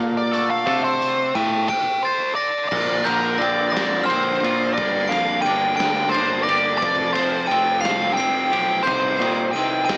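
Indie rock in 6/8 at a slow 59 BPM, this short cut from a longer piece feels restless and bittersweet, with a home-cassette character and a small-speaker sound in a small room with light reverb. A nasal lead guitar with a parked wah sits up front, dark and overdriven, carrying the melody and taking a solo over the opening 2.7 seconds before the music moves into a new section. Beneath it, a compressed overdriven electric guitar and a clean, twangy second guitar, set back in the mix with lush chorus and tape echo, play riffs, while a bright, punchy picked bass anchors the low end. A raw garage drum kit joins at 0.3 seconds from the background, saturated and gritty with a rolled-off top, a punchy kick and a medium-tuned snare, alongside crash, ride and hi-hat. At 1.4 seconds a glockenspiel played with brass mallets adds a sparkling, bell-like second line high above, as the chords move from D5 through Bbadd9, Gm7 and Fadd9 to Cm.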